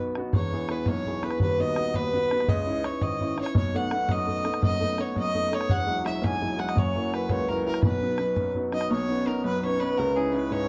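A rich, earthy fiddle carries the melody up front in this bright, rollicking Celtic jig in 6/8, cut from a longer piece, its bowed line set in plate reverb. A clear, woody upright piano provides the accompaniment, a hammered cimbalom rings in the background as a second line through tape echo, and a boomy, close bodhran plays until 8.9 s, when the tune moves into a new section. The production is dark and warm, wrapped in a small room's reverb.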